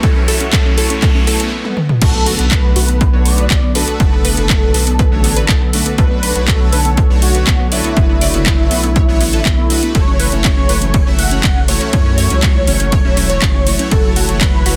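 Bittersweet and dreamy, this progressive house cut in B minor at 121 BPM opens with a two-second build-up, where a riser gives way to a brief stop at 1.5 seconds while a swell and drum fill carry into the drop, which lands at 2.0 seconds with an electronic impact. Over a punchy, overdriven kick with room ambience, a house kit of metallic hats, claps, ride, crash and toms, and a deep, saturated sine sub bass, a lush warbling pad holds sustained chords while a detuned, wave-folded pluck spins arpeggios and a smooth supersaw adds stabs, all pumping with sidechain and trailed by delay on pluck and stabs. A bold, ring-modulated unison lead with vibrato carries the melody from 2.0 seconds as the chords move from F#m7 to Bm7 and back to F#m7 at 9.9 seconds, all in a dense, heavily limited modern mix.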